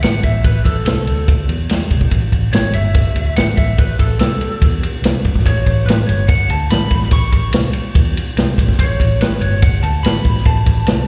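A bright, twangy, lightly driven lead guitar solo with slapback echo opens on an A5 chord at 0.0 s, backed by a dark, foam-muted, round fingered electric bass and an up-front vintage drum kit with punchy kick, medium-tuned snare and ride cymbal, in a driving, raunchy blues rock power trio and southern rock groove at 144 BPM in A mixolydian, heard as a live gig through the venue's PA with light recital hall reverb in this 11.1-second cut from a longer piece.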